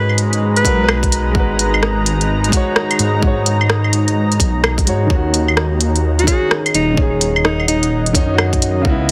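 A heavily compressed, radio-like sound with little reverb frames this melancholic, wistful future garage excerpt in G# minor at 128 BPM, swung on the 16ths, with chords moving from G#m7 to D#m7 at 5.1 seconds. A dark, woody upright piano, a moody, chorused ambient pad with slow attack and long release, and a rumbling, saturated detuned saw bass all pump together, while an electronic drum kit of claves, smooth hi-hats and rim clicks, joined at 0.6 seconds by a tight kick, sits up front in a small room. A mellow alto saxophone with vibrato, subtone and scooped notes drifts through tape echo in brief jazz-style phrases at the start and again from 6.2 seconds.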